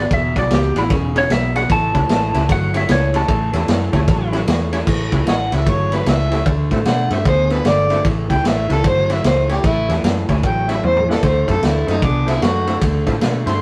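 A clean, twangy lap steel guitar opens this soulful, swaggering electric blues shuffle at 151 BPM in A mixolydian, taking a short slide solo over a slightly broken-up, lo-fi electric guitar riff, a round, foam-muted electric bass, an up-front vintage drum kit with dark cymbals and a tight kick, and a percussive tonewheel organ with slow rotary speaker and overdrive sitting in the background. The lap steel stops at 4.3 seconds, and at 5.3 seconds an overdriven, gritty harmonica takes the lead with light vibrato, scooped notes and tongue slaps, over chords moving through E9, A9 and D9 to a closing Dm7, with a drum fill at 10.8 seconds. The rough rehearsal-room sound carries moderate reverb, and this is cut from a longer piece.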